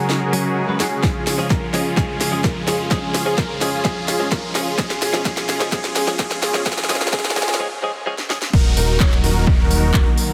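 The overdriven electronic kick drum stands out most, punchy and up front from 1.0 s, driving this powerful, euphoric festival progressive house excerpt in Eb minor at 128 BPM in a straight 4/4. Around it, a house drum kit with a cracking snare, crisp hats, handclaps and crash cymbal plays fills through a build-up, while a huge, lush supersaw riff in detuned unison pumps against the sidechain with tape echo and a low-pass filter. A bowed chamber string section holds intimate, sul tasto chords with light vibrato under a filter sweep, accompanied in the background by a dark, worn baby grand piano playing arpeggios and a clean, direct-recorded electric guitar with subtle chorus and echo. A riser and downlifter sit low in the mix, the chords moving from Gbsus2 through Db/F and Fdim as tension climbs toward a short break at 7.6 s. At 8.5 s the drop lands on Ebm, and a fat, thick analog bass enters on a low Eb, all within a dense, heavily limited modern master with light reverb.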